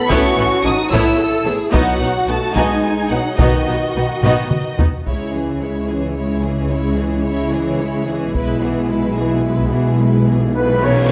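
Hard-stick taiko drums, close and dry, pound through this dark, heroic cinematic excerpt in a straight 6/8 with a fill from 4.2 to 5.1 seconds, beneath a lush violin melody with smooth vibrato, a softer second violin line in the background, rich viola accompaniment, mellow vintage French horn chords, and brooding cello and double bass lines, before clear close-miked trumpet stabs burst up front at 10.5 seconds and a huge, shadowy cymbal swell rises behind them at 10.8 seconds, all set in a moderate scoring-stage reverb.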